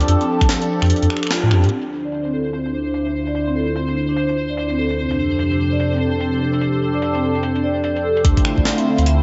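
The phased analog pad stands out most, up front with swirling, nasal sustained chords moving between F69 and Dm9, colored by phaser and chorus and put through a filter sweep from 1.7 to 8.2 seconds. This eerie, melancholic IDM fragment in D minor runs at 147 BPM in 4/4 with a 62% swing on sixteenths, taken from a longer piece. A soft-mallet vibraphone plays dark, ringing arpeggios through a low-pass filter and delay, sharing the same filter sweep, while a gritty, pitched-up jungle sampler-style kit of finger snaps, hi-hat and snare sits low in the mix, its snare, hats and room low-passed and trailed by tape echo. A round sine sub bass and a thumpy, compressed electronic kick appear at the start and return at 8.2 seconds, with the kick dropping out from 0.9 to 1.7 seconds around a band accent at 1.3 seconds. From 2.0 seconds a faint, bright pulsing gated texture holds C5 with chorus and its own reverb. 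A moderate plate reverb soaks the whole into a dreamy mix with its top end rolled off.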